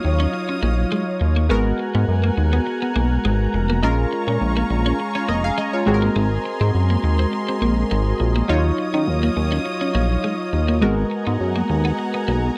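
Funk at 103 BPM in a straight 4/4, this danceable, slick excerpt from a longer piece sets a glossy, up-front chorused synth bass with a filter pluck under a punchy polysynth comp with chorus and filter sweep, a dark, clean picked electric guitar riff through analog chorus, and intimate bowed strings holding sustained chords with vibrato, all in a dry, close 1970s-style studio sound moving through Ebm9, Abm9, Bbm7 and Ab9.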